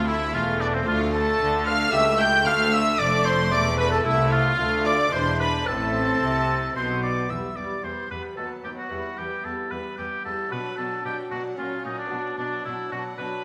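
Classical music in a baroque-style concerto movement, this stormy, driving passage in triple time is cut from a longer piece with solo episodes. A clear oboe carries the melody up front, lightly vibrato-touched yet somewhat distant and roomy. A chamber violin section plays the melody higher up, and a second violin section adds a supporting line beneath. A dark viola section and a delicate, fingerpicked lute with doubled gut strings fill in the accompaniment from the background. The bass comes from a cello section and a double bass section, both rich and bowed with reedy, period-style gut-string tone, until the double bass stops at 7.3 s as the music moves into a new section. The ensemble is bathed in a wet recital-hall reverb.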